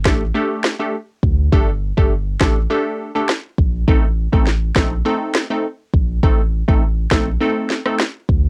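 A dry, homemade cassette sound gives this short dancehall cut a bouncy, tough character, with each part placed up front. An electronic afro-pop drum kit plays a straight 4/4 with a deep kick, rim click and sharp snare, while a full sub bass with octave, blending sine and triangle tones, holds sustained low notes from G1 to D2. Above them, a crisp, detuned wavetable chord stab sounds bright, decaying chords through a phaser and tape coloring, moving from Gsus2 to Adim at 3.9 seconds.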